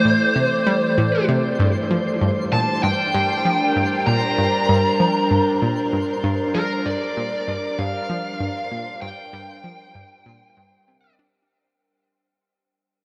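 A steady, straight 4/4 pulse at 97 BPM carries this cosmic, expansive ambient excerpt in G dorian, moving from Am7 to Gm at 1.6 seconds inside a huge, wet reverb. A dark, distorted electric lead guitar plays a bluesy melody with tape echo over an evolving, detuned wavetable pad holding chorused sustained chords, while a round, bright analog pluck drives a low riff with chorus and tape echo. A twinkling granular texture with octave-up shimmer sits in the background, and the whole piece fades out from 4.9 seconds to its end at 11.5 seconds.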